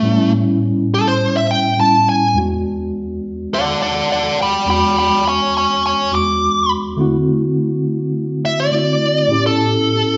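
A bright, smooth overdriven electric guitar takes a picked solo from the very first second, up front over a mellow, clean tine electric piano, in a rollicking yet laid-back straight blues at 104 BPM in 4/4, tuned to A4 = 439 Hz. The piano holds down the accompaniment through its built-in speakers as the changes move from A7 to E7 at 2.4 seconds, D7 at 7.0 seconds and back to A7. The two players sound live in one large studio, bathed in a wet 1.2-second reverb, with the top end rolled off above 7.6 kHz in this 10.2-second cut from a longer piece.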